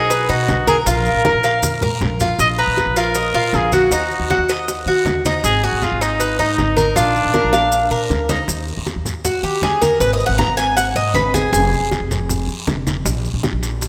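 A clear, punchy trumpet leads this danceable, nostalgic excerpt of Cuban son and guajira from the first beat, carrying a vintage pop-style melody with vibrato up front. A bright, metallic Cuban tres with double strings and some octave-doubled strings plays picked arpeggios beside it, while a woody, dark upright bass with gut strings plays thumpy pizzicato lines underneath. Congas with a thick, low-tuned skin, tight high-tuned bongos played with soft hands and a raspy guiro sit in the background, joined by grainy, mellow maracas, at a brisk 158 BPM in straight 4/4, with a couple of drum fills along the way. The harmony in Eb harmonic minor moves through chords such as Bbsus4, Ebm, Abm and Bb. The trumpet stops at 8.1 s, and from 8.5 s the tres takes a solo over Ebmadd11, Abm9 and Fm. A lush hall reverb bathes the rough home-demo mix.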